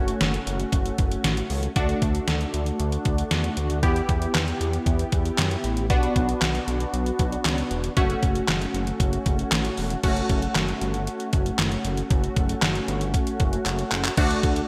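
Driving and melancholic, this synth-pop excerpt moves at 116 BPM in 4/4 over an F#m, D, Em, Bm progression, with a detuned 8-bit digital drum machine up front: a thumpy kick, medium-tuned snare, handclaps, hi-hat and crash, all tape-tinged and wrapped in gated reverb, with a drum fill from 13.7 to 14.2 seconds. A punchy, funky polysynth comp of detuned sawtooth and pulse waves, with a moving notch, filter sweeps and chorus, sits forward over a glossy, chorused synth bass built from pulse-width modulation, ring modulation and detuned waves. The bright, 1980s-style digital production is bathed in a lush hall reverb.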